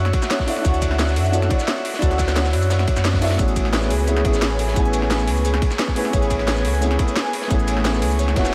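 A dreamy, reverb-soaked mix opens this uplifting liquid drum and bass excerpt at 175 BPM in A major, where a felt-muted upright piano with soft, audible action noise, vintage sampler grit and tape echo plays accompaniment over airy, breathy pad chords treated with chorus and phaser. A woody kalimba picks out arpeggios through analog delay in the background, while a round sine sub bass sits up front beneath the harmony as it moves from Dmaj9 to Amaj9 at 3.4 seconds. From 0.1 seconds a tight electronic kick and a produced kit with a cracking snare, crisp hats, ride and shaker enter alongside a gritty, saturated breakbeat kit with a rolled-off top tucked in the background.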